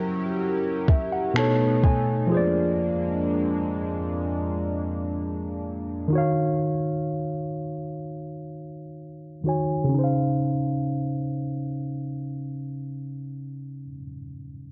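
This contemporary R&B excerpt is tender and romantic, moving at a slow 63 BPM in 4/4 with a straight feel in Db major, tuned to A4 = 436 Hz. A mellow tine electric piano carries the accompaniment throughout, its worn, slightly out-of-tune tone lightly overdriven through a combo amp and placed up front, with a short fill early on. Beneath it, a shimmering, retro pulse-width pad holds sustained chords with a soft attack, sub octave, moving notch and chorus until it drops out at 6.1 seconds. A smooth, electronic drum kit appears only briefly, from 0.9 to 2.1 seconds, with finger snaps and a soft, tape-warm kick. The harmony drifts through Gb7b9, Cb9, Bb7/F and Ebm9 under a filter sweep before settling on Dbmaj9 as a new section opens. A lush hall reverb and a dark production that rolls off the top end wrap the sound in a hazy glow.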